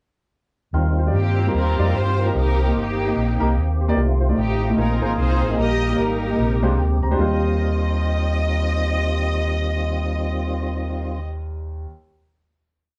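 A swung 4/4 pulse at 149 BPM drives this short, hopeful and reverent uptempo gospel piece in Eb major, anchored by a round, up-front fingered electric bass that walks and runs with slides and chromatic approach notes. A clear concert grand piano plays off-beat drop2 chords with deep bass and long sustain and adds a short fill at 6.4 seconds, while a fat, lightly overdriven tonewheel organ holds a sustained pad with key click, chorus vibrato and a slow rotary speaker. From 1.2 seconds a lush bowed string section carries a motif-based melody with smooth vibrato, and the band settles on a final Eb69 chord at 7.2 seconds in a moderate, large-room reverb that gives the feel of musicians playing live together.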